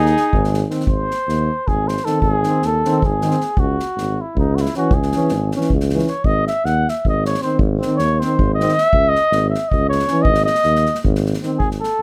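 A cup-muted cornet, veiled and mellow with light vibrato, carries a fiery, bittersweet Balkan brass band melody in 7/8 over an up-front tuba bass and a punchy, airy acoustic drum kit played with bundle sticks, as a roomy French horn and euphonium fill in accompaniment and a flugelhorn sounds only briefly at the start, in this section cut from a longer piece with chords alternating between G# and C#m.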